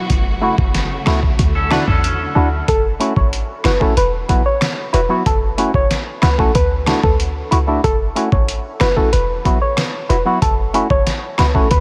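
Bouncy and tough, this dancehall excerpt rides a straight 4/4 groove at 93 BPM in F# minor, cycling through F#m7, Dadd9 and Esus2. A dusty, sampler-style drum kit sits up front with a thumpy kick, fat snare, rim click and hi-hat, its overdriven, compressed grit sounding re-recorded in a small room, while a short 808-style bass adds punchy, tight low end with a mellow decay. A hollow, nasal organ stab with chorus supplies percussive accompaniment throughout. At the opening, a lush bowed string section holds sustained chords with vibrato and sidechain pumping until 2.7 seconds, briefly joined by twangy, clean electric guitar arpeggios from 1.6 seconds. From 2.7 seconds a round, gentle FM synth lead with a keys-like strike carries the melody, colored by chorus and analog delay, all set in light reverb.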